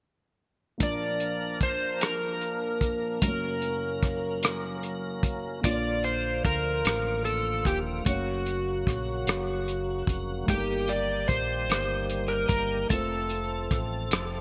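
An overdriven slide guitar sings the melody up front, its gritty tone colored by analog chorus and delay, in this reverent, hopeful slow gospel passage in 6/8 cut from a longer piece. Beneath it a woody, slightly detuned upright piano and a full tonewheel organ with key click and fast rotary speaker hold the harmony through Bb and Gb, moving on to Eb/G and F. A muffled, lo-fi soul drum kit of hi-hat, tight kick and rim click sits close with gated reverb, while a round, punchy fingered electric bass joins at 5.6 s, all set in a plate reverb and a bright 1980s-style digital sound.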